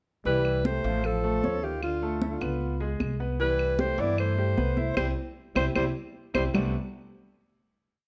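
A dark, subtoned alto saxophone carries a motif-based jazz melody up front in this lively, sophisticated Afro-Cuban jazz piece at 153 BPM in C major, shadowed in the background by a breathy trombone harmony line mostly in thirds with slapback echo, over a clear grand piano montuno in octaves, a woody pizzicato upright bass tumbao that anticipates the chords, soft-handed high-tuned congas with slaps and open strokes, and claves marking a two-bar time line, with a band accent from 5.0 to 6.5 seconds before a final chord settles into a large studio reverb.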